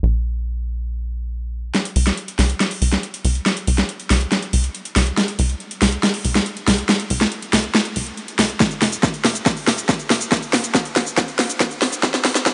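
A straight uplifting trance passage, cut from a longer track, opens with a tight, sawtooth-edged sequencer bass that drives alone, pumping against a sidechain with a fast, plucky attack and a mellow decay. At 1.7 s a layered big-room kit enters with a huge snare, metallic hats and shaker, all filtered and up front, launching a build-up and extended drum fill, before a punchy analog kick joins at 8.6 s. The mood is bittersweet yet euphoric, with a light reverb and a top end that's rolled off above 10.3 kHz.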